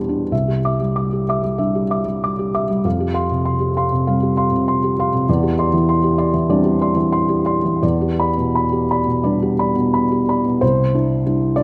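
The rhythm breathes freely in a rubato 4/4, with the pulse drifting between 83 and 100 BPM in this short passage cut from a longer piece. It is neoclassical minimalist piano in C major, peaceful and tender in mood, played by a solo felt-muted upright piano that sounds for the full 11.6 seconds across a span from C2 to D6. The thick felt gives the instrument a soft, dark, mellow tone, and the close, up-front placement makes it feel intimate, with the noise of the action clearly audible. The harmony moves gently through Cadd9, Fsus2, Cadd9/E and Em7 before a brief new passage at 10.6 seconds returns to Cadd9. A wet scoring-stage reverb with a 2.1-second decay surrounds the playing, lending the close, hushed sound a spacious halo.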